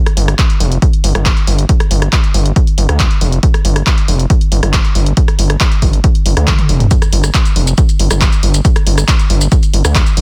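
A dense, heavily limited modern master with a digital ambience frames this short cut from a longer piece of driving peak-time techno, relentless and dark at 138 BPM in a straight 4/4. The gritty driven synth bass sits up front, a nasal, aggressive sawtooth tone with oscillator sync and a sine underneath, its fast attack and sustained notes thickened by tube saturation and pumping against the sidechain as it moves between F1 and D2. A layered, punchy electronic kick drum shares the front of the mix, arriving at 0.4 seconds. Behind it, a dry analog drum machine supplies handclaps, hi-hat, rim click, shaker and toms, with its hats, toms and percussion breathing under sidechain pumping. A drum fill from 6.5 seconds leads into the drop at 6.9 seconds, which carries the track to its cut at 10.2 seconds.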